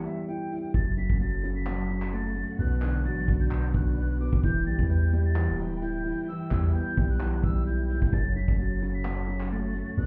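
A half-time 130 BPM trap beat in F# phrygian sets a melancholic yet hard-hitting mood, as a dark, up-front concert grand piano and an airy, vibrato-laden silver flute with digital delay open the excerpt at 0.0 seconds, a distant brush drum kit with punchy kick, hi-hat and handclaps carrying 12-bit sampler grit joins at 0.1 seconds, and at 0.7 seconds a deep, decaying sine 808 bass and lush, woody strings in the background arrive, the whole mix bathed in club reverb and sounding muffled as if heard through a wall.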